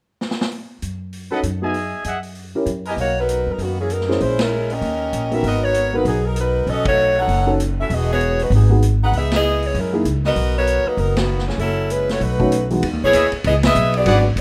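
A light reverb surrounds this brassy, energetic big band swing excerpt in B major, cut from a longer piece and moving at 195 BPM in 4/4 with a swung eighth-note feel. A vintage drum kit opens with a short fill at 0.2 seconds, its dark cymbals, medium-tuned snare and tight kick carrying a gritty, saturated character with a rolled-off top. A woody pizzicato upright bass on steel strings sits up front from 0.8 seconds, and a warm upright piano comps through changes such as Emaj9, F#7b9 and G#m9, dropping out before returning near the end. A clear trumpet section adds tight stabs with light vibrato and a soft attack, first at 1.3 seconds and again near the close. The close-miked saxophone section takes the melody at 2.9 seconds, leading the arrangement while the band hits accents at points like 4.4 seconds on the way to a final Emaj7.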